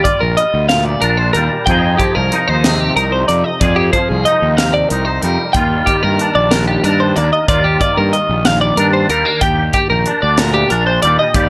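Rolling in a straight 6/8 with an unhurried dotted-quarter pulse, this bright, wistful slice of math rock and midwest emo places a clean, compressed twelve-string electric guitar up front, picking arpeggios over a twangy, fingered electric guitar treated with ensemble chorus. A polished fusion kit with a high-tuned snare, tight kick and hi-hat enters at 0.1 seconds in an airy studio room, and a dark, round fuzz bass, overdriven, punchy and up front, joins at 0.2 seconds. Under light reverb, the harmony moves from Ebmaj9 to Fm9 and then to a rootless Cm11.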